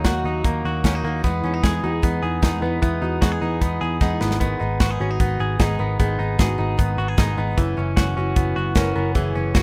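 Youthful and bright, this short excerpt of jangly indie pop moves at 152 BPM in a straight 4/4 over D#m, Emaj7, G#m and F#7sus4, with a twangy, compressed clean electric guitar playing up-front arpeggios, a dark, fingered electric guitar carrying the melody in the background beside a warm picked steel-string acoustic, a round, foam-muted vintage bass underneath, and a tight-kicked acoustic drum kit with medium-tuned snare and hi-hat that plays a fill at 4.0 seconds, all in a rough home-demo mix with small room ambience.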